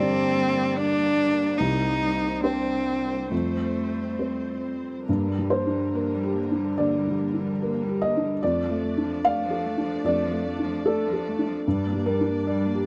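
Neoclassical piano and strings in a melancholic, reflective mood, cut from a longer piece and moving with a rubato feel in 4/4 over minor-key harmony. A felt-muted upright piano sits up front as the accompaniment, its thick felt giving a soft, dark, intimate tone with audible action noise, while a single bowed cello carries a second line close by with intense vibrato and a smooth top. Behind them a distant studio string section holds sustained chords, even and bowed, and the whole is captured in a dry, close 1970s-style studio sound with little reverb.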